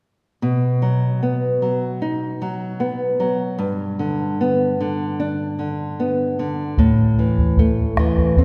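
Andean folk in a slow, straight 4/4, earthy and melancholic, this excerpt from a longer piece sets a small, up-front fingerpicked nylon-string guitar, moving from B5 to G to A5 chords, in the long wet reverb of a church, with a round, close and dry bombo joining at 6.8 seconds.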